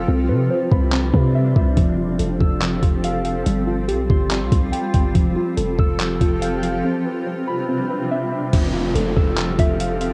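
A gritty, pitched-down trip hop sampler kit sits up front in this dreamy, floating cloud-rap excerpt, entering at 0.7 seconds with a thumpy kick, hi-hat, handclaps and crash cymbal, all compressed and tinted by cassette tape. At 142 BPM in 4/4 with a half-time feel, the track stays in F lydian as the chords move through Cmaj7, Fmaj7 and G7sus4 before settling back on Fmaj7. A deep, boomy 808-style bass with a mellow sine tone anchors the low end, while muted, intimate synth keys spin soft arpeggios through chorus, a low-pass filter and tape echo. Behind them, a granular cloud pad holds blurred, evolving chords bathed in its own reverb. A faint electronic downlifter drifts in the background from 8.5 seconds, and at 9.6 seconds a hollow, bouncy square pluck briefly sounds a single dark note through chorus, tape echo and cassette grit, all within a lo-fi home-cassette sound with light reverb.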